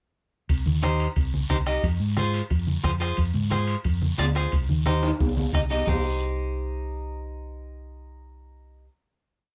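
A brisk, straight 4/4 cumbia pulse at 178 BPM drives this short, fiery Latin piece in C minor, moving from Cm to Fm and back to Cm. A round, dark hollow-body short-scale electric bass plays an up-front cumbia figure, joined by a clean electric guitar picking rhythmic triad chords in its upper register. Underneath, a soft-beatered bombo thumps kick and rim strokes, thick-skinned, low-tuned congas sit in the background on the off-beats, a raspy, band-limited guiro scrapes long and short strokes, and ringing metal-shelled timbales with bell sound from a distance in a large room. A drum fill at 4.9 seconds leads into a closing chord, and the percussion stops at 6.0 seconds, leaving bass and guitar to ring out. The close, detailed recording carries a light reverb and a passionate energy.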